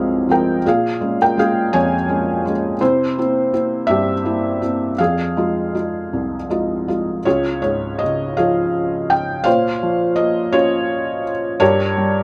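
Classical and lyrical, this dark, reflective solo for felt-muted upright piano unfolds in F minor at a rubato 55 BPM in 6/8, its soft, mellow, intimate tone sitting up front with audible action noise and light reverb, spanning C2 to Ab5, moving from Fm through Bbm7 and C7, adding a brief fill at 6.1 seconds, then turning at 7.3 seconds toward Db, Bbmadd9 and a closing Gdim in this short excerpt from a longer piece.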